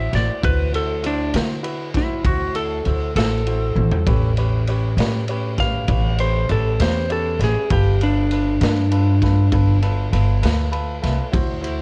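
This home cassette recording sounds dry, with little reverb. It is a soulful, gritty slow blues in 12/8 at 66 BPM with a straight feel, cut from a longer piece and moving from D7 to A7 and then G7. A clean, dark electric lap steel guitar carries the compressed slide melody until 9.8 s. Beneath it, a clear upright piano plays intimate, polished accompaniment with audible action noise and long sustain, closing with a fill at 10.4 s. The pizzicato upright bass sits up front, woody and thumpy on steel strings with tube saturation. The raw garage drum kit brings a punchy kick, medium-tuned snare, ride cymbal and toms in a small, pumping room, its sound saturated with a rolled-off top, and a short fill lands at 3.8 s.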